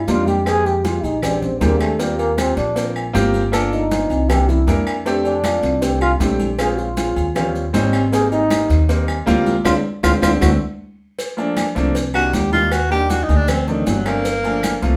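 Fiery yet sophisticated, this Afro-Cuban jazz passage, cut from a longer piece, moves at 157 BPM in a straight 4/4, with a band playing live in one room under a wet studio reverb. A dark, breathy trombone carries the melody up front with light vibrato and a soft, whispered attack that still sounds distant and intimate, soloing until 10.5 seconds. Beneath it, a pizzicato upright bass with steel strings gives a thumpy, woody foundation, while a grand piano with long sustain sits present and up front, moving through rich extended chords such as Fm11, Bb13 and Abmaj7. In the background, ringing congas, a tight high-tuned cowbell, metal-shell timbales with agogo bells and woody claves build the percussion bed, joined by grainy, mellow maracas. A band accent and a drum fill close the trombone's turn before a clear, breathy tenor saxophone takes over at 12.1 seconds, its scooped notes and vibrato sounding as the harmony moves toward Gm9.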